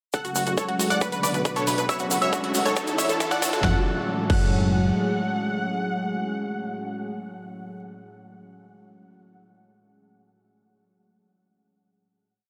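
A punchy, overdriven four-on-the-floor kick up front and a background kit of programmed hats, huge snare and crash drive this driving and euphoric uplifting trance piece, where grainy hand-played shaker sixteenths and a galloping, plucky analog bass sit beneath a detuned supersaw stab riff in thirds and sixths over a pedal note, doubled an octave higher by a brilliant concert grand piano, while a lush, warbling pad with vintage 12-bit grit holds the chords, the bass, stab, piano and pad all pumping inside a dreamy cathedral reverb as a very quiet riser from 1.5 seconds and a drum fill build to a held final chord at 3.6 seconds.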